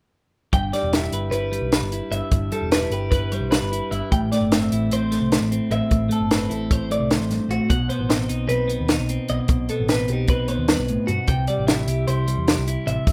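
A rough home-demo sound in a small, moderately reverberant room frames this intricate, bright fragment of math rock and midwest emo in G major, set in 9/8 at 301 BPM counted in eighths: a twangy, compressed clean electric guitar sits up front with accompaniment over G6, Am7, B7b9b13 and C6; a clean twelve-string electric guitar picks high arpeggios through spring reverb and slapback echo; a round, dark hollow-body short-scale bass gives amped, punchy low support; and a dry, up-front compact cocktail kit with a high-tuned snare, hi-hat and kick plays from 0.5 s to 13.1 s.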